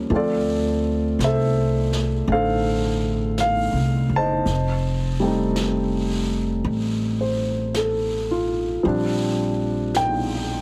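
A tender, romantic jazz ballad in F major at a slow 55 BPM, swung in 4/4, moving from Dm9 through F7 to a Bb69 chord at 8.8 seconds. A grand piano with audible action noise carries the accompaniment up front alongside a woody pizzicato upright bass, with a soft brushed drum kit of snare and hi-hat from a small room coming in just after. Light reverb sits over a heavily compressed, radio-like sound in this short section cut from a longer piece.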